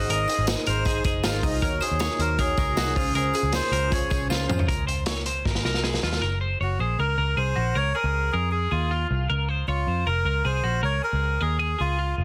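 A straight, steady 4/4 pulse drives this short cut from a longer piece of jangly indie pop, and the mood is youthful and breezy. A vintage acoustic drum kit sits up front with a punchy kick, medium-tuned snare and a muffled, rolled-off top, adding fills before it drops out at 6.2 seconds. A faint, jingly tambourine lingers in the background in a large room. A dark, round, foam-muted electric bass anchors the low end. A bright, twangy twelve-string electric guitar picks clean arpeggios with tape echo throughout. Warbling, detuned lo-fi synth keys with chorus add nostalgic, mellow colour until 4.7 seconds, while a reedy, breathy melodica carries the tune up front through tape echo, pausing briefly and returning at 6.6 seconds over a small room ambience and a dense, heavily limited modern master.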